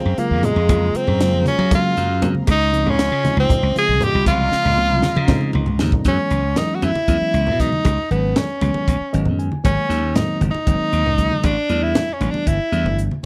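Electric jazz fusion in a quick, straight 7/8 at 234 BPM, bright and funky, heard as an excerpt cut from a longer piece and settling into F# mixolydian from 6.1 s. A bright tenor saxophone carries the solo melody up front, its jazz-style line coloured by vibrato, scooped notes and a slapback echo, while a glassy slap bass sits equally forward with a punchy, direct electric tone. A crisp fusion drum kit, polished and airy with a high-tuned snare and punchy kick, drives the groove on hi-hat, kick, snare and toms, and warm, low-tuned congas with a thick-skinned, vintage sound play hard hands in the background. A reedy, lightly overdriven electric piano comps behind them through its built-in speakers, while a dark, floating string section holds very quiet sul tasto chords under the opening major-ninth harmonies until 6.0 s. A drum fill from 4.5 s leads into a second passage of suspended ninth chords, where the electric piano adds a brief fill of its own, all captured as a dry, close 1970s-style studio recording with small room ambience.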